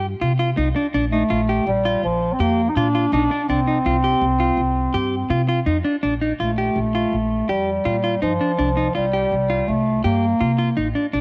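A vintage-toned bass clarinet carries a brooding, intricate solo melody from 1.1 seconds in this brief fragment of progressive instrumental band music in 7/4 at 165 BPM in C dorian, over clean, compressed electric guitar arpeggios and a woody, dark pizzicato upright bass, with the clarinet and guitar both colored by cassette tape and the whole set in the light reverb of a small room on a homemade cassette recording.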